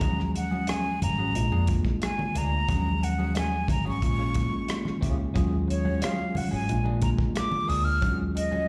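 Heard through a club's PA with light reverb and a small-room feel, this is a short cut of lush, 1970s-style soul in Eb minor, moving at a relaxed 90 BPM in a straight 4/4 with a smooth, cinematic mood. A breathy concert flute carries the melody across a range of Db5 to F6, close-miked with a soft attack and a straight tone, and a slapback echo trails its phrases. Beneath it, a mellow tine electric piano plays clean chords through its built-in speakers, also touched by slapback echo, cycling between Ebm11, Bb7 and Bbm7. A round, foam-muted fingered bass with a dark, amped punch anchors the low end, while a soul drum kit sits up front with a punchy kick, hi-hat and rim click, stopping just before the close at 8.5 seconds. Lower in the mix, a bright, twangy electric guitar through a small old amp plays a compressed, slightly broken-up picked riff bathed in spring reverb and slapback echo, and very quiet, damped congas with a thin skin add a close, delicate layer of percussion.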